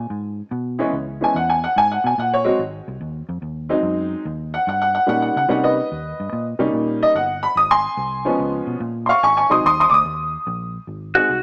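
Rollicking yet laid-back, this electric blues shuffle swings along in 4/4, cut from a longer piece. A woody, slightly detuned upright piano carries the accompaniment up front, its boxy tone rolling through a progression that moves from Db7 and Dbm7 to Ab7 and Eb7. Beneath it, a dark, foam-muted fingered electric bass keeps a round, punchy low end from the start. A clean lap steel guitar slides in at 11.2 s with a single compressed, scooped note just as the passage cuts off. A moderate echo chamber reverb and a small-speaker character give the recording a vintage feel.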